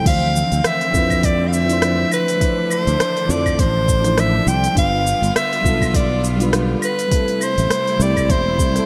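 An excerpt of relaxed, wistful sunset chillout opens on a breathy soprano saxophone carrying the melody, soft-attacked and whispered with scooped notes and light vibrato, sitting up front and trailed by digital delay. Beneath it, a mellow FM electric piano plays a round, warbling accompaniment with a chorus shimmer and a noise layer, while a studio string section holds lush, bowed chords in the background with focused vibrato. A growly, punchy fretless electric bass enters at 0.1 s alongside a soft electronic kick and a smooth R&B kit of hi-hat, rim click, claves, shaker and crash cymbal, both drum parts tape-tinged and re-recorded in a large room. The groove swings gently in 4/4, and the harmony moves from Dm9 to G7 at 4.8 s and on to Am7 at 7.1 s. Light reverb and digital ambience frame a bright 1980s-style digital production.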